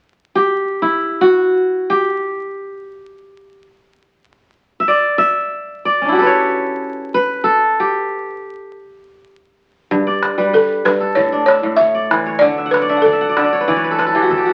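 A bright, ringing, fingerpicked kora plays crisp, up-front arpeggios alone in free time in G lydian for this joyful, warm West African traditional string and xylophone music, until a deep calabash enters at 9.9 seconds and a woody, dry balafon struck with rubber mallets adds a buzzing melody from 10.5 seconds, all heard through moderate large-studio reverb and the crackle of a very old 78 rpm record in a fragment cut from a longer piece.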